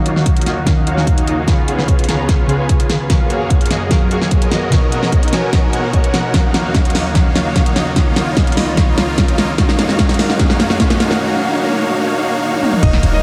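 Lush, detuned supersaw chords, a ringing concert harp pumping through delay and glassy digital keys open this emotional, dreamy future bass build-up at 148 BPM in half-time over Ebm9, Db7, Gbmaj9 and Bmaj9, with a breathy, warbling pad beneath, a punchy electronic kick and a pop kit of fat snare, metallic hats, toms and crash driving drum fills, a faint riser arriving at 7.1 seconds, and an impact at 12.8 seconds that briefly brings in a brilliant, worn grand piano and a deep, boomy 808 bass, all soaked in huge ambient reverb.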